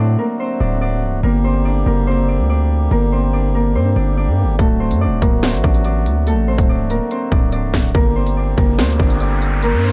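This drill cut opens on a thumb-plucked Celtic harp carrying the melody, its ringing acoustic tone darkened by a low-pass filter and trailed by delay. Beneath it, a hand-pumped harmonium breathes reedy sustained chords, and a distorted 808-style bass thunders up front with a heavy, aggressive sine body, a noise layer, a fast attack and a decaying tail. The harmony moves between D and G minor, giving the passage a menacing, cold air in a half-time feel. At 4.6 seconds an electronic drill kit drops in up front, pairing a hard-clipped kick with a sharp snare and crisp hats that carry a tape-like warmth. An electronic riser enters at 8.5 seconds to push toward what comes next. The production is dark and dry, with vinyl crackle and a muffled top end that keeps the whole mood close and shadowy.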